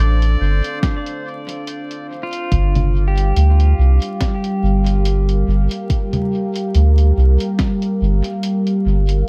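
An echo-heavy mix flecked with vinyl crackle frames this hazy, spacious ambient dub fragment, drifting from Dm7 to Gm7 with a lightly swung feel. A round, soft sub bass sits up front beneath a dark, detuned sawtooth pad bathed in chorus and reverb, while a reedy, breathy melodica offers a brief phrase in the opening 0.8 seconds and a bright, twangy pedal steel spins arpeggios until 7.0 seconds, both trailed by analog delay. Muffled, pitched-down sampler drums bring congas, hi-hat and a fat snare steeped in dub echo, and a deep, tape-warm electronic kick punches up front from 0.8 seconds.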